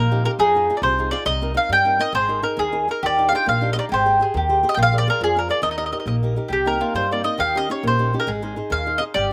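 An Italian folk serenade opens with four parts together: a mellow, round mandolin carries the melody up front with a slapback echo, while a second, woody-toned mandolin plays a supporting line. A bright, fingerpicked flamenco guitar and a thumpy, gut-strung upright bass played pizzicato fill out the accompaniment in a lively, sunny 6/8 at 137 BPM in Eb major, with a rubato feel. The dry outdoor sound keeps the double-strung mandolin picking close, and a new section begins at 6.5 seconds in this short cut from a longer piece.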